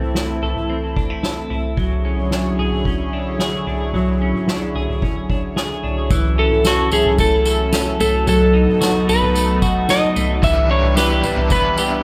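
Ethereal and blissful, this 111 BPM dream pop excerpt floats on a thick, warbling, detuned sawtooth pad holding chorused sustained chords, while a clean semi-hollow electric guitar picks arpeggios through lush chorus and digital delay over a punchy-kicked soft-mallet drum kit of kick, snare, tambourine and toms, a slide-played lap steel guitar carries an up-front, delay-tinged melody from 6.4 s, and a bright, crunchy overdriven guitar joins at 10.4 s with tremolo and chorus, the whole mix set in a moderate plate reverb.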